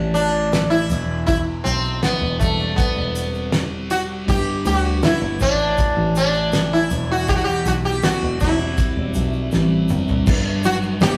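Mysterious and hypnotic, this slow 80 BPM psychedelic rock excerpt sets a buzzing, shimmering sitar melody up front over a thick, double-tracked fuzz guitar riff colored by distortion and phaser, a round, punchy picked electric bass, a very quiet grainy tube shaker and a damped 70s drum kit with a fat snare and tight kick that plays a fill from 9.5 to 10.3 seconds, all circling chords from A5 and E5 through C/E and G5 to a closing Gmaj7 in a rough rehearsal room with a moderate stone-room reverb.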